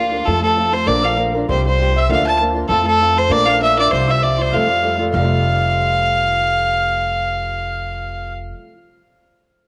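A rollicking, lively Celtic reel in F major at 197 BPM opens with the full ensemble at once: a rich, nasal fiddle carries the melody up front, while a pure wooden whistle with chiffy tongued notes and a touch of tape echo joins a very quiet, ringing Celtic harp on second lines. Underneath, a dark, boxy fingerpicked old ladder-braced acoustic guitar and a pizzicato upright bass with a woody tone hold down the harmony, cycling through F, Bb and Csus4 before settling on Fadd9, with a new strain arriving at 5.1 seconds. A moderate plate reverb gives the short passage a roomy, spirited glow.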